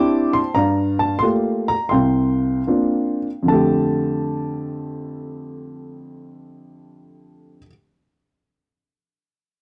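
Swung eighths in 4/4 drift with a rubato feel between 72 and 97 BPM, easing into a slowdown over the first 3.5 seconds of this relaxed, sophisticated solo jazz fragment in F major, cut from a longer piece. A lone upright piano, woody and intimate with audible action noise, spans C2 to D6 through a D9sus4, Gm9 and C9sus4 before settling on an F69 chord at 3.5 seconds. The dry, close studio sound evokes the 1970s and keeps the instrument up front.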